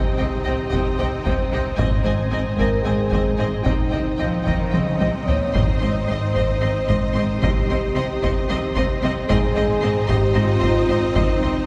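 Mellow French horns, a lush string section and quiet trombones open on sustained chords in this triumphant, majestic cinematic orchestral excerpt in Ab major, moving at 224 BPM in 7/8 over alternating Cm and Ab harmony, as a dark, woody violin melody sits in the background above a focused second violin line, a very quiet, distant viola accompaniment and smooth cello and double bass lines, while heavy-stick taiko drums enter at 0.7 seconds with a fill at 4.7 seconds, soft timpani strikes punctuate the first two Ab chords, and a concert hall reverb places the orchestra further back in the room.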